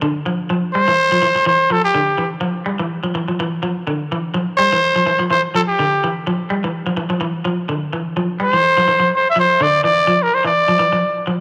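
A clean electric guitar opens this intense, hypnotic afrobeat excerpt, picking bright, twangy arpeggios with a subtle chorus shimmer. At 0.7 seconds a growling trumpet steps up front as the soloist, carrying the melody in a raspy, gritty voice with light vibrato and a smooth top end. The groove moves at 125 BPM in 4/4 with a slight sixteenth-note swing, and the tuning sits a little sharp, at A4 = 445 Hz. The harmony floats unanchored until a Dmadd9 chord arrives at 9.6 seconds. A moderate echo chamber reverb with a 2.6-second tail wraps the sound, lending the piece a roomy, lingering glow.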